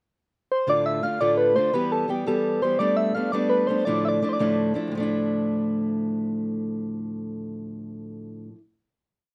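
Spirited and wild, this brief Celtic folk jig in 6/8 opens with a pickup bar, during which a soft struck synth lead enters at 0.5 s, its round, detuned, keys-like tone with chorus carrying a motif-based melody in period phrases until 4.6 s. A fingerpicked acoustic archtop guitar joins at 0.7 s, boxy and up front with audible finger squeak, driving its strumming through open chord shapes and carrying the final chord. Light reverb and close, detailed microphones give the piece an intimate clarity.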